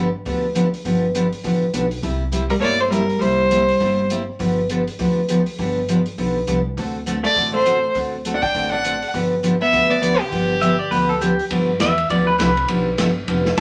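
Set in a wet studio reverb, this playful, swinging excerpt of western swing country at 203 BPM in G mixolydian rides on a bright, up-front picked dreadnought acoustic guitar with finger squeak, a woody pizzicato upright bass and a vintage drum kit with dark cymbals and a punchy kick in a pumping small room over G7, C7 and D7 changes, while a clear, smooth bowed fiddle with light vibrato carries the melody in phrases from 2.5 s alongside a second line from a dark, compressed hollow-body jazz guitar, before a clean pedal steel guitar played with fingerpicks, slide and volume swells enters at 10.6 s and takes a solo at 11.5 s.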